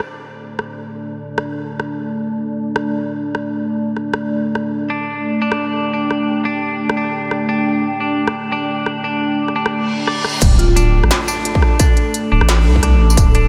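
Half-time drum and bass at 174 BPM with a tense, dark mood, opening on a tape-warm industrial kit of clanging snare, smooth hats, rim clicks and tambourine, soon joined by a deep, warbling sawtooth pad with vintage sampler grit and sidechain pumping, and then at 4.9 seconds by twangy clean electric guitar arpeggios through analog delay, before a reverse cymbal and impact usher in a drop at 10.4 seconds where a thick, saturated sub bass and a distorted electronic kick push up front, a brief woody marimba note sounds in the background, and the whole mix is soaked in huge, dreamy reverb.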